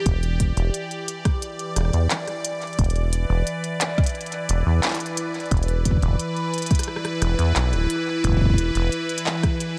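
A swirling, detuned analog pad with phaser, chorus, sidechain pumping and shimmer reverb opens this eerie, glitchy IDM excerpt alongside a clicky electronic drum kit of handclaps, hi-hat and rim click, joined at 0.1 s by a soft, tape-warm electronic kick and a deep, rubbery, saturated acid bass with resonant filter sweeps, while the chords move from Em7 to Bm/E and settle on E5 at 8.2 s.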